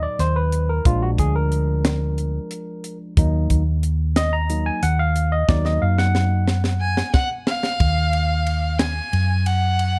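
A barky, lightly overdriven tine electric piano takes the lead through a combo amp with plate reverb, soloing over a driving, tense progressive instrumental groove in 7/8 at 181 BPM in Eb harmonic minor, moving from Ebm to Bb7 and back. A dark, round hollow-body short-scale bass sits up front beside a crisp, polished fusion kit with a high-tuned snare and punchy kick, which plays a fill from 5.5 to 7.8 seconds. A distant, expressive bowed violin enters at 6.8 seconds with vibrato and portamento, carrying the melody into a new section on Ebmadd9 as this excerpt from a longer piece closes.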